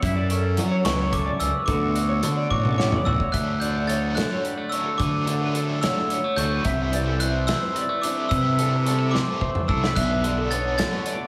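A lush hall reverb gives this short math rock and midwest emo passage a big arena sheen over a small room ambience, its wistful, bright mood set in D major at 72 BPM in 6/8, moving through chords like F#m7, Dmaj9 and C69. An up-front, round fuzz bass and a loose indie drum kit with a tight kick and pumping room sound support a clean, twangy phased guitar in the background and lo-fi, slightly broken-up arpeggios from a small old amp treated with chorus and slapback echo. A ringing, bell-like glockenspiel played with hard plastic mallets carries the melody from 0.8 s, a drum fill arrives at 2.5 s, and at 3.3 s a biting, double-tracked overdriven guitar riff with tremolo joins.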